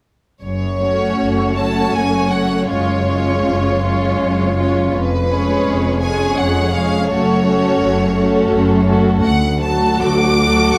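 A moderate recital-hall reverb surrounds this elegiac, solemn slow movement for string orchestra, cut from a longer piece, in F# minor and 3/4 time at 72-88 BPM with a rubato feel. The rich, vibrato-laden violin section carries a focused melody over cellos and double basses that begin together at 0.4 s, the cellos smooth and even while the basses add lush bowed portamento. At 0.8 s a second violin line and dark, expressive violas fill the middle, as the harmony moves from F# minor through C# chords and back to F# minor before settling on D.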